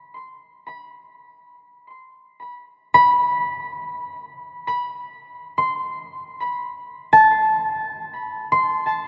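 Serene and luminous, this short ambient fragment drifts in free time, cut from a longer piece. A solo concert harp carries it alone from start to finish, fingerpicked and ringing in a high register between A5 and C6. Its acoustic tone sits up front, touched with tape echo that trails each plucked note. A drenched cathedral reverb surrounds the harp, giving the dark, warm production a long, glowing decay. The harmony settles on A minor at 1.5 seconds and holds until 8.4 seconds, when the chord falls away and the harp's resonance fills the final moments.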